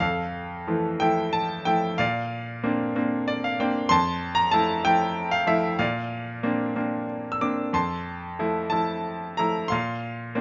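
Melancholic and dark, this short classical excerpt, cut from a longer piece, features a lone grand piano playing lyrically in 6/8 with a free, rubato feel. The piano's tone is bright and brilliant, sitting up front and present, with notes that decay quickly rather than ringing long. It spans from F2 up to E6, moving between Fmaj7 and Bbadd9 harmonies before settling on a Bbsus2 chord at 9.7 seconds. A brief piano fill between 3.0 and 3.9 seconds adds a moment of ornament within the single section. Light reverb gives the instrument a modest sense of space, and the overall sound is rolled off at the top, with nothing above 7.6 kHz.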